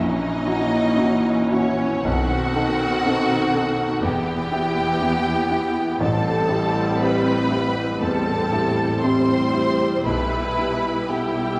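Moving in a slow, rubato 4/4 at around 55-62 BPM, this brooding, passionate romantic movement for piano and orchestra in E minor is cut from a longer piece, with a baby grand piano carrying the melody up front with open, long-sustaining tone while a violin section sings a focused, vibrato-rich line high above and a second violin section adds a lower line. Violas supply lush, expressive accompaniment with portamento, a dark cello section anchors the bass, and a double bass section with soft attack joins beneath them at 2.0 seconds. The harmony moves from F#7/A# through B7b9 to Em and Am7 before settling on Em/B at 10.0 seconds, all bathed in the wet reverb of a recital hall or church.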